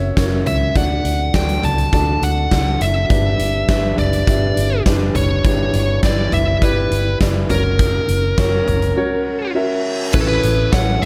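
Piano-driven pop at 102 BPM in a straight 4/4, earnest and dramatic in mood, cut from a longer piece. A smooth, overdriven lead guitar carries the melody up front between A4 and A5, its picked, dark tone given a slapback echo. A concert grand piano with a deep low end supplies the accompaniment, sharing that slapback echo, while a vintage foam-muted fingered electric bass adds a round, amped bottom. A huge arena drum kit enters at 0.2 seconds with a punchy kick, a medium-tuned snare, toms, hi-hat and crash, sounding natural and roomy. The harmony moves from F# through D and Em7 back to F#, then a break at 9.0 seconds brings an electronic reverse cymbal leading into an impact at 10.1 seconds, landing on Aadd9 under a light, small-room reverb.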